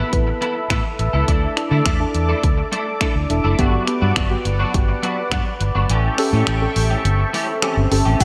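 A dreamy, reverb-soaked mix opens this bittersweet yet driving dance-pop excerpt at 104 BPM, where a punchy house drum kit with bright hats, finger snaps and shaker and a round, foam-muted, sidechain-pumped vintage electric bass sit beneath an airy, detuned supersaw swell, deep mellow chord stabs and a bright, clean, picked twelve-string electric guitar riff over Asus2, Dsus2, Gmaj7 and A7, until the kick drops out at 5.9 seconds, a very quiet swell and impact arrives at 7.1 seconds, and a soft octave-layered synth lead with tremolo slips in at 7.9 seconds.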